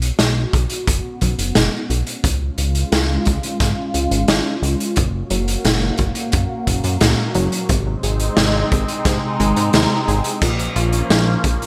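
Synthwave at 88 BPM in Db major, romantic and uplifting, with a swirling, detuned phased pad pumping against the sidechain and a round analog pluck arpeggiating in the background, both under filter sweeps until 10.4 seconds, while a glossy pulse-width chorused synth bass, a gritty, saturated garage drum kit with dark cymbals and gated reverb up front, and a punchy kick entering at 0.5 seconds drive the track, all set in a lush hall with bright 1980s-style digital sheen.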